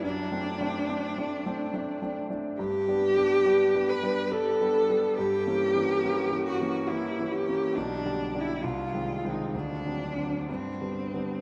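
A single bowed cello carries the melody up front, its warm, vibrato-rich tone sliding between notes with expressive portamento, yet touched with a distant quality as it sings between C4 and B4. Beneath it, a clear concert grand piano supplies the accompaniment from B1 up to D4, polished and present, with deep bass, long sustain and an intimate closeness that lets the audible action noise of the instrument come through. This tender, lyrical romantic duo moves in a slow 3/4 at roughly 62-72 BPM, breathing with rubato across its 11.4 seconds. The harmony drifts from D7/F# to G, darkens through Gdim7, then passes G/B and Ab/C before D7 resolves home to G at 10.5 seconds. A wet cathedral reverb with a 5.7-second decay places the pair in a vast, echoing space, and the passage is cut from a longer piece.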